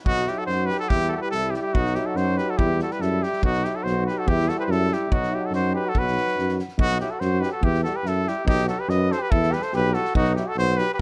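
A rough home demo mix with studio reverb frames this short cut from a longer Balkan brass band piece, bittersweet and restless in mood. The trumpet sits up front with the melody in a classical style, while a distant flugelhorn with light vibrato carries a second line. Beneath them, a mellow, roomy tuba with light vibrato holds the bass. It is joined by a euphonium kept in the background and a very quiet French horn with vibrato and a smooth top, both playing accompaniment from the start until 10.9 seconds. An acoustic drum kit recorded in a small room adds a fat snare and a punchy kick under the straight two-beat pulse. The harmony moves between B and E minor across two passes of the same section, the second beginning at 6.8 seconds.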